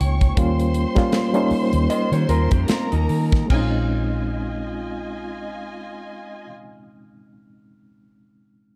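A reedy, tube-saturated electric piano with fast tremolo accompanies this cinematic, smooth excerpt of lush 1970s-style soul in Bb dorian at 72-82 BPM with a swung 4/4 feel, joined by a round, foam-muted electric bass, a polished acoustic drum kit with bright cymbals and a punchy kick that drops out at 3.7 seconds, a woody bowed violin section with vibrato, and a faint, bell-like glockenspiel, while a dark, slightly broken-up lo-fi guitar riff enters at 1.9 seconds; the tempo slows through the opening as Eb9 gives way to Bbm11, and the piano carries on alone from 6.5 seconds in a dark studio reverb.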